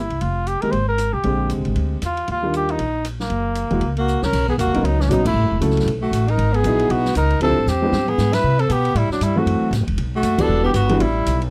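Swinging at a brisk 234 BPM in 4/4, this sophisticated, playful small-group jazz excerpt sets a veiled, bucket-muted trumpet with vibrato on the melody over woody pizzicato upright bass, smooth vintage grand piano accompaniment and an acoustic drum kit with dark cymbals, a boomy kick and fills near 4.1 and 7.7 seconds, while a breathy tenor saxophone with scooped notes enters on a second line at 4.0 seconds, heard in a dry, close 1970s-style studio sound.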